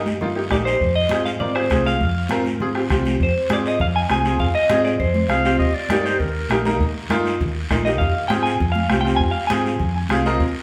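A straight, driving cumbia groove in 4/4 rolls from a soft-beaten bombo, high-tuned congas in the background and a raspy guiro beneath a dark, round hollow-body electric bass, while a brilliant, worn, slightly detuned upright piano comps up front, a twangy clean electric guitar with spring reverb carries the passionate melody, a breathy clarinet slips in a scooped, vibrato-laden second line from 5.3 to 6.8 seconds, and the piano adds a fill at 9.8 seconds, the whole band playing live in one wet stone room in this clip cut from a longer piece.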